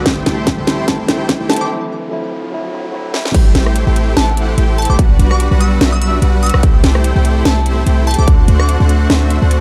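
A half-time feel with swung sixteenths drives this euphoric, bright future bass passage, cut from a longer piece. It opens as a build-up: a glassy, crystalline wavetable pluck carries the melody through a filter sweep, with chorus and tape echo, while a clean tine electric piano, played through a combo amp and treated with dub echo, supplies accompaniment. A background riser enters at 1.3 seconds, a break follows at 1.7 seconds, and the drop lands at 3.3 seconds, after which the electric piano drops out at 3.4 seconds. Throughout, a huge, thick, detuned supersaw riff, compressed and laced with vibrato, sits over a deep, boomy 808-style bass. Distant chamber strings hold earthy, bowed chords in the background, and the pluck, piano, strings, supersaw and bass all pump under sidechain. A punchy layered kick and a trap kit with a sharp snare, metallic hats, rim clicks and crash cymbals sit up front, framed by light reverb and digital ambience in a dark, warm production.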